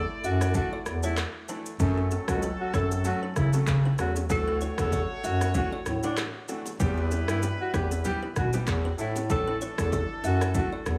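This breezy, sunny afrobeats excerpt at 96 BPM opens at once with a breathy, whispered alto saxophone carrying the melody through a tape echo. Beneath it, a distant, roomy horn section plays a second line, and an up-front bass clarinet holds the bass part with a jazz-style subtone and light vibrato. Within the first half second, a punchy, layered deep house drum kit sets in with kick, handclaps, rim click and shaker, joined by a very quiet, woody kalimba riff and a clear concert grand piano accompaniment with short sustain. At 4.3 seconds, very quiet congas and bongos add ringing live-room percussion. In A mixolydian with a lightly swung sixteenth-note feel, the harmony moves from Asus4 through F#m, Dadd9 and Em before returning to Asus4, set in a small-room ambience.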